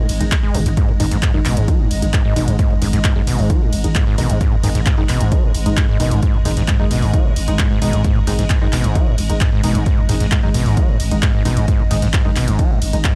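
A dry, gritty hardware recording with transformer saturation carries this driving, intense slice of peak-time techno, where a heavy, up-front layered kick and a punchy overdriven analog drum machine of handclaps, hi-hat, ride and toms push under a growling, buzzy 808-style bass and a squelchy, resonant acid riff with distortion and tape echo, while muted dub chord stabs with lush chorus, a swarming detuned drone and a blurred granular cloud pad pump softly in the background.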